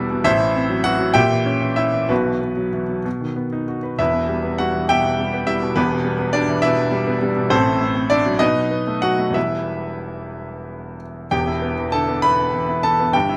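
A clear, intimate baby grand piano plays alone in this agitated, passionate classical virtuoso study in E minor, tuned to A4 = 441 Hz and moving in a rubato 6/8 at roughly 61-70 BPM, spanning E1 to B5. The harmony moves through F#m7b5/A, A#dim7 and Bsus4 before settling on E minor at 4.0 s, returns through F#m7b5/A and B7 to E minor at 9.4 s, and then a new section begins at 11.3 s before this fragment of a longer piece cuts off. Close, detailed microphones keep the natural piano up front, with audible action noise and a light reverb.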